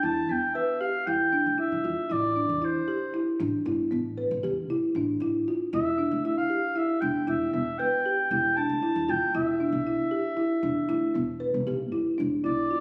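From the first beat, a mellow, distant oboe carries the melody over a rustic, dry folk marimba whose soft mallets play arpeggios, while a growly pizzicato upright bass sits further back. The chamber piece is hypnotic and urgent, moving at 116 BPM in an uneven 7/4 with a straight feel in E phrygian, passing through Em, A5 and E7(no3). It has the roomy sound of a phone recording in a moderate recital hall, with added studio reverb and compression, and it is cut from a longer piece.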